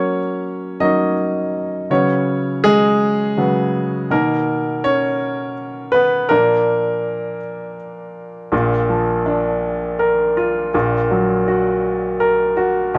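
A slow, straight 6/8 pulse at 54 BPM in dotted quarters carries this dramatic, melancholic pop fragment, played by a solo baby grand piano that sounds clear, present and polished, sitting up front across its range from Bb1 to Eb5 for the full 13.0 seconds. The harmony moves from Gb through Db7sus4 and Bmaj7 to Bb, then the music shifts into a new section at 8.5 seconds and settles on Gb/Bb at 10.7 seconds. A wet studio reverb with a 0.7-second tail gives the live-room sound some bloom, while the top end stays soft, rolled off above 10.6 kHz.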